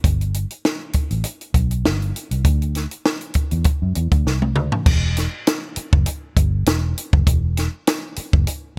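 Romantic and warm, this short cut from a lush 1970s-style soul piece pairs a dark, round, foam-muted vintage electric bass with a dry, compact cocktail drum kit whose high-tuned snare and punchy kick sit up front in a nearly reverb-free sound, with a drum fill at 4.3 seconds leading into a new section at 4.9 seconds.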